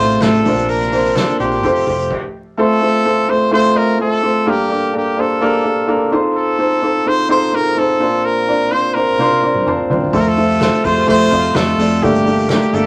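Hopeful and anthemic, this piano-driven pop excerpt in F mixolydian moves at 127 BPM, with a bright, punchy trumpet melody up front over a mellow felt-muted upright piano. Floating sul tasto strings and a dark, round foam-muted electric bass join at the start and again from 10.1 seconds, a distant soft-mallet drum kit plays at the start and returns at 9.2 seconds, and very quiet crisp handclaps appear early and again from 10.6 seconds. Everything is set in a wet studio ambience with vinyl crackle, with a full stop at 2.1 seconds, a drum fill at 9.2 seconds and a piano fill from 9.4 seconds.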